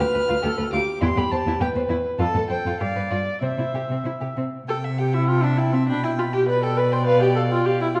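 Set in a wet recital hall with a dark, warm production, this lively, graceful classical-period movement for string quartet is a short cut from a longer piece, played on gut strings in period style with a flexible rubato feel in 2/4. A nasal, distant first violin carries the melody above a second violin with light vibrato, while a reedy viola and a rich cello sit up front with the accompaniment and bass. The harmony moves from G7 over D through C, F add9 and G7 to C, and a new section begins at 4.7 seconds, later moving to G over B and then G7 over B.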